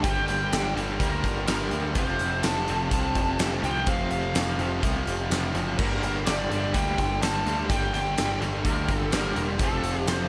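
This is a gritty, swaggering classic rock passage in straight 4/4, cut from a longer piece and running about 10 seconds over a Gmadd9 to Fadd9 progression. A huge arena drum kit sits up front in a big room, with a fat snare, punchy kick, hi-hat, crash cymbal and tambourine driving the groove, while a growling electric bass, picked and overdriven, adds a bright, amped edge beneath it. Three rhythm guitars stack the riff: a warm, biting overdriven part with tremolo, a bright distorted part in the background, and a very quiet, dark, double-tracked sludgy guitar thickening the low end. Over them, a dark lead guitar through a small cranked amp plays the melody with wah and overdrive. Tucked far beneath everything is a very quiet, picked old ladder-braced acoustic guitar with a woody, boxy tone and old strings, and the whole mix sits in a light reverb.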